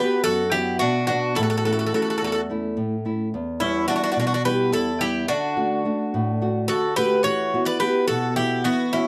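A bouzouki, a mandolin and a nylon-string guitar start together, playing a hopeful Greek folk tune in a straight 7/8 metre. The bouzouki carries the melody up front with a bright, metallic, picked tone, its double strings partly doubled at the octave. Beneath it the mandolin adds a second line, its picked double strings sounding round and warm. The fingerpicked nylon-string guitar, small and dark in tone yet also close in the mix, supplies the accompaniment through a progression of Bm, A, Em, D and Esus2. Close, detailed microphones and a moderate studio reverb give the trio an intimate, clear sound across this 9.1-second passage cut from a longer piece.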